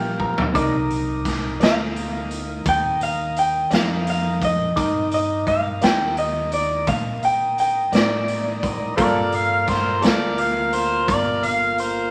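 Swaying in a straight 12/8 at 57 BPM, counted in dotted quarters, this slow blues is cut from a longer piece and feels brooding and soulful, moving from Gm9 to Cm9. A raw garage drum kit sits up front with a punchy kick, medium-tuned snare, hi-hat and toms in a bright, pumping stone room, its saturated, gritty sound rolled off at the top, while a woody pizzicato upright bass with steel strings anchors the low end. A clear upright piano, intimate and polished with audible action noise and long sustain, opens with a short fill alongside a drum fill, and a smooth, clean tonewheel organ holds sustained chords through a slow rotary speaker. Two electric guitars through a small old amp, slightly broken-up and lo-fi, share the arrangement: one plays accompaniment in the background with harmonic tremolo, and the other carries a compressed, picked melody at the forefront from 1.6 s. At 9.0 s, as the harmony returns to Gm9, an overdriven, amplified harmonica enters with light vibrato, a soft attack and tongue slaps, all set in moderate reverb over a bed of vinyl crackle.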